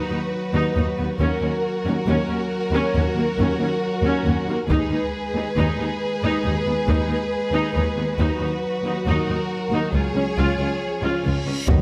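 A slow, straight 4/4 pulse at 69 BPM drives this epic, relentless cinematic orchestral excerpt, where warm vibrato violins carry the melody over a second violin line, intense violas, soft-attack French horn chords and a lush cello and double bass foundation, as close, dry taiko strikes with hard sticks break in at 4.7 seconds, a huge, dark reverse cymbal and impact surge from 11.2 seconds, and mellow trombones join at the final moment, all set in a moderate scoring-stage reverb.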